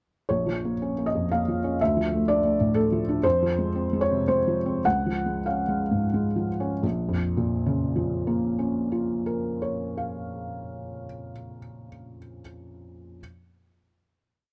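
Neoclassical minimalist piano in Bb minor and 3/4, a brief, complete piece with an intimate, reflective mood, played rubato on a solo felt-muted upright piano at a tempo drifting between 84 and 126 BPM. The muted, mellow piano sits up front with audible action noise, carrying a single-line melody over rocking broken chords through Bbm, Dmadd9, Fm and Db, slowing from 2.5 seconds until a final Bbm chord arrives at 6.8 seconds and rings until around 10.9 seconds. The production is dark and warm with little reverb, keeping the sound close and personal.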